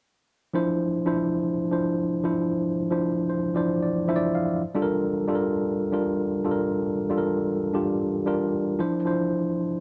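A solo tine electric piano enters at 0.5 s in this brief fragment of a driving, danceable disco piece in D minor at 115 BPM, moving from Dm9 to Gm7 at 4.6 s and back to Dm9 at 8.8 s. The piano sounds worn and slightly out of tune, lightly overdriven as if heard through built-in speakers, and sits up front in light reverb, ranging from F3 to F5. A fill runs from 3.0 to 4.6 s before the part ends at 9.8 s.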